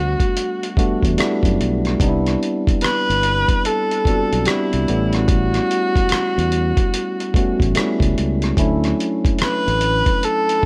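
Up-front viola, electric piano and drums sit in a digital ambience on this soulful, smooth neo-soul and R&B excerpt, which moves at a relaxed 73 BPM in 4/4 with a swung 16th-note feel and tuning set to A4 = 438 Hz. A single bowed viola carries the melody with a warm, even tone and gentle vibrato, while a bright, clean tine electric piano moves through Gmaj7, Cmaj9, A9 and Dmaj9. A round, punchy fingered electric bass plays until 10.0 seconds, and a dusty, gritty sampler-style kit enters at 0.2 seconds with a thumpy kick, hi-hat and rim click, compressed and re-recorded in a small room.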